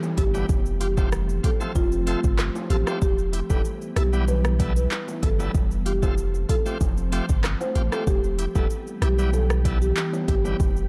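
Bouncy and hypnotic, this short dancehall cut from a longer piece moves in a straight 4/4 groove under a dark, warm production with a digital ambience. An electronic afro-pop drum kit sits up front with a deep kick, metallic hats, handclaps, rim clicks and shaker, while a punchy sine sub bass with a pitch-drop attack anchors the low end. A glassy, ethereal FM pad holds sustained chords through ensemble chorus and built-in reverb, pumping against the beat, and a lightly overdriven tonewheel organ with a fast rotary speaker adds bright, shouting accompaniment that pumps as well. Over this, a woody, mellow marimba played with soft mallets carries the melody through a digital delay, entering at 0.2 seconds. Low-tuned acoustic bongos stay distant in the background, and the harmony circles between Fadd9 and Em.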